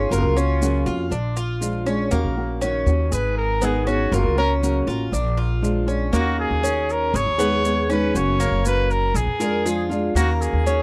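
A straight 4/4 groove at 120 BPM carries this sultry Cuban son and guajira passage in Eb minor, cut from a longer piece, with woody, thumpy pizzicato upright bass up front, grainy maracas joining at 0.1 seconds, bright, metallic double-string arpeggios on the Cuban tres, and fingerpicked flamenco guitar accompaniment. Over the cycling Gb, Bb7, Ebm7 and Abm chords, a punchy trumpet with vibrato and tape echo takes a solo from 0.0 to 6.1 seconds, then keeps carrying the melody. The sound is dry and close, in a 1970s-style studio with light reverb.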